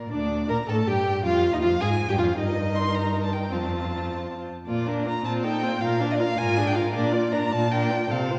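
A single dark, woody violin carries the melody high above the ensemble, its bowed line shaded with vibrato as it enters at 0.1 seconds in this spirited, graceful classical-period movement for string quartet, which moves quickly in 6/8. Beneath it, a second violin plays the inner second line with a warm, smooth, even tone and vibrato, sounding from the very start. The viola supplies accompaniment in a darker, expressive voice, its bowing marked by vibrato and portamento slides. The cello anchors the bass with a rich, focused sound that sits up front in the mix. The harmony moves through suspended and added-note colours before settling on the home chord, and the quartet is heard from further back in a scoring stage whose reverb lingers for about 2.0 seconds. This brief passage, cut from a longer piece, runs to 8.4 seconds.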